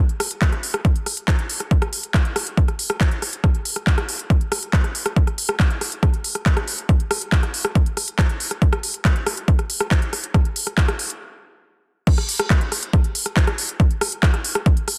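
A straight 4/4 pulse drives this trance fragment, cut from a longer piece, with an electronic kick drum arriving at 0.4 seconds and sitting up front with a punchy, layered weight. A techno drum kit, already under way from 0.1 seconds, fills out the groove with smooth hi-hats, handclaps, rim clicks and crash cymbal, its produced sound also placed forward in the mix. The mood is driving and psychedelic, carried entirely by percussion. At 11.2 seconds the beat breaks off in a brief stop, then crashes back in as a drop at 12.1 seconds. Light reverb and a digital ambience surround the kit, and a dense, heavily limited modern master shapes the whole track.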